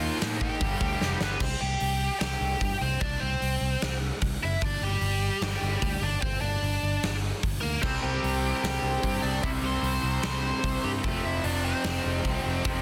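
A dry, dense, heavily limited mix carries this raw, aggressive punk rock excerpt at 149 BPM, where a biting, overdriven lead guitar plays the melody up front over a growly picked bass and a punchy, up-front acoustic drum kit in a bright stone room, while a lo-fi garage guitar in the background and a tight distorted guitar play the riff from 0.0 to 1.4 seconds and again from 7.8 seconds, after a drum fill drops the groove into half time at 1.4 seconds.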